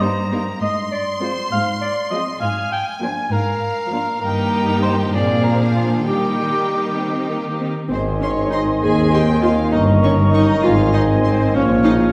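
In 6/8 at 66 BPM, this magical, playful cinematic excerpt in Eb major sets an intense chamber violin melody with vibrato over a mellow cor anglais, smooth studio violins, close violas and lush cellos, then at 7.9 s shifts to Ab major as an airy flute section, bright clarinet, mellow bassoon, dark soft-attack French horns, focused double basses and a punchy tuba join, all sitting back in a wet scoring-stage reverb.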